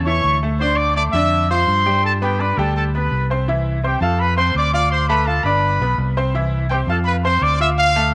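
Bathed in a moderate spring reverb, this joyful, festive salsa excerpt puts a clear, tight trumpet section with light vibrato up front on the melody over a dark, round fingered electric bass, while a bright, slightly detuned upright piano with woody action noise and long sustain fills in the chords as the music moves into a second section at 3.5 seconds.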